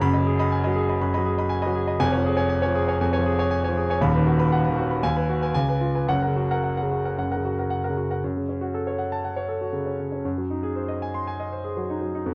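A classical virtuoso piano study at 119 BPM in 4/4, this brief excerpt, cut from a longer piece, has a brilliant, heroic mood and a rubato feel. A solo grand piano, warm, natural and up front, ranges from D#1 to B#5, moving through F# major before turning to F# minor at 8.2 s. Light reverb surrounds it, and the sound carries the worn, warbling character of old cassette tape with a drifting pitch.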